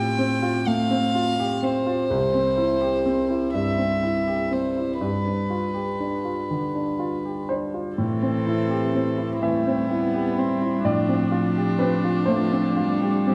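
In a 6/8 metre with a free, rubato pulse, this hopeful and tender neoclassical passage for piano and strings is cut from a longer piece. A clear grand piano sits up front as the accompaniment, reaching from deep bass notes into the middle register, while a single violin carries the melody with a rich, pure tone, bowed sul tasto with a soft attack so the line seems to float. At 8.0 seconds a cello and viola join. The cello adds a distant, floating second line, and the viola fills in the accompaniment with an intimate, airy bow and light vibrato. The harmony drifts from Fadd9/A through C and G7 to Am7 before returning to Fadd9/A, all set in the wet reverb of a recital hall that suggests a church or concert hall.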